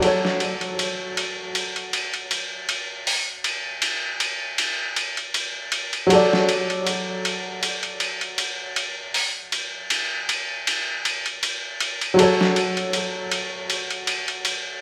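An upright piano carries this melancholic, cinematic trip hop fragment, its woody, boxy tone and short sustain sitting up front, colored by tremolo, vintage 12-bit sampler grit and tape echo as it plays accompaniment between F#3 and D5. The piece moves at 79 BPM in 4/4 with a 55% swing on the sixteenths, in F# minor with tuning at A4 = 439 Hz. A sampler-style drum kit of hi-hat, ride cymbal and a medium-tuned snare sounds compressed, pitched down, gritty and tape-warm, as if re-recorded in a small room, with high-pass filtering thinning the cymbals, hats, snare and room. The harmony rests on F#m, shifts to D/F# at 6.1 seconds, and returns to F#m at 12.2 seconds. A lush hall reverb, a bright 1980s-style digital sheen and vinyl crackle frame this short passage cut from a longer piece.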